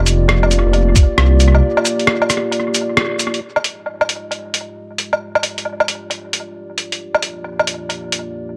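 This future garage passage, cut from a longer piece, moves at 134 BPM in 4/4 with a 64% swing on the sixteenths, and its mood is melancholic and ghostly in F dorian. A nasal, moody analog pad holds sustained chords throughout, its detuned saw, square and triangle layers thickened by a sub octave and chorus, with slow swells of attack, long release and sidechain pumping, sitting further back than the other parts. A rumbling, beating detuned saw bass sits up front at the start but stops at 1.6 seconds, where a break begins. A muffled, pitched-down sampler-style kit of cabasa, hi-hat, rim click and woodblock runs nearly the whole way, compressed and up front, its hits trailing through analog delay, while a thumpy electronic kick lands once at 1.0 seconds. The harmony drifts from Gm7/F to Fm9 as the second section opens at 3.4 seconds, then returns to Gm7/F, all set in light reverb within an echo-heavy mix.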